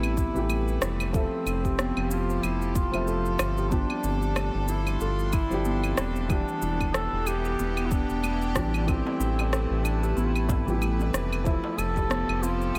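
A smooth, vibrato-rich duduk sings a folk-style solo melody over an earthy organic downtempo groove at 93 BPM with a lilting 16th-note swing, framed by a felt-muted upright piano with 12-bit sampler grit and sidechain pumping, bright bowed chamber strings holding pumping chords, woody ringing kalimba arpeggios trailing delay, a round, mellow analog bass up front, and layered electronic claves, shaker and rim click with a deep electronic kick, while a crisp, very quiet darbuka slips in at 9.1 seconds, all moving through Fmaj7, G7sus4 and Em7 in a dreamy mix soaked in plate and shimmer reverb.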